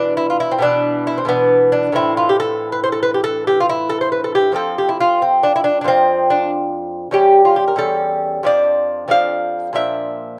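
Unfolding in a rubato compound metre, this flowing, introspective baroque-style dance for solo lute, cut from a longer piece, features bright, delicate fingerpicking on doubled nylon strings with some octave-doubled courses, sitting up front in a dry, open-air sound.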